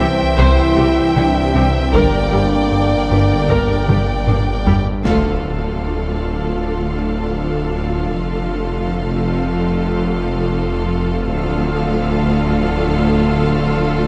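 In a straight, steady 4/4 pulse, this brooding, relentless excerpt from a hybrid orchestral and electronic film score layers a rich chamber violin melody over lush symphonic violins, dark violas and clear cellos, with dark French horns, clear trombones and an ethereal, airy pad holding sustained chords above a bowed double bass section, a thick, menacing detuned saw bass and a rubbery, hollow square bass riff. Heavy-stick taiko drums play a fill that closes the opening phrase, after which the chamber violins, trombones, square bass and taiko drop away. At 5.1 seconds an ensemble accent and a huge, dark impact mark the turn to a Dm, F and Dm passage, all set in a moderate scoring stage reverb.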